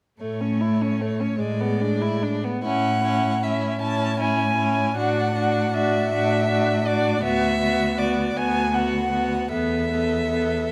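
Classical slow romantic movement for string quartet in A major, lyrical and warm, moving rubato in 6/8 at about 45-54 BPM, where a rich, smooth first violin sings the melody up front with even vibrato, a second violin weaves an expressive portamento line beneath it, a focused viola accompanies from a more distant place, and a dark cello anchors the bass close at hand, all bowed by single players in a moderate recital hall with close, detailed microphones, the harmony passing from A through D/A and Bm/D to a suspended Esus4 at 9.5 seconds in this fragment of a longer piece.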